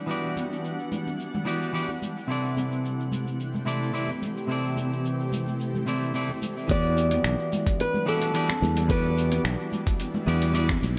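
Warm and smooth, this sunset chillout excerpt moves at 109 BPM in E minor with a light swing on the sixteenths, drifting between Em9 and C6 chords. A shimmering, ethereal pad with a slow attack and long release holds sustained chords under chorus and phaser, while a bright, clean, picked electric guitar sits up front in accompaniment, trailed by tape echo. A dusty soul sampler-style kit of cabasa, finger snaps and hi-hat sounds gritty and compressed, with high-tuned congas ringing softly in the background. At 6.7 seconds a growly, punchy fretless bass and a thumpy electronic kick enter up front, and a fingerpicked flamenco guitar adds a brief melody with tape echo until 9.4 seconds. A lush hall reverb wraps the whole mix.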